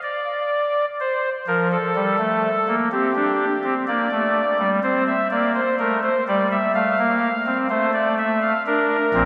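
A straight 4/4 pulse at 62 BPM carries this lively yet stately baroque-style three-part fugue, cut from a longer piece, where a solo pipe organ on a soft reed oboe stop with baroque voicing and tremulant sits up front, spanning Bb1 to F5 through chords moving from F to C5, C7, F/A and Bb, all bathed in a wet cathedral reverb with a 4.1-second decay.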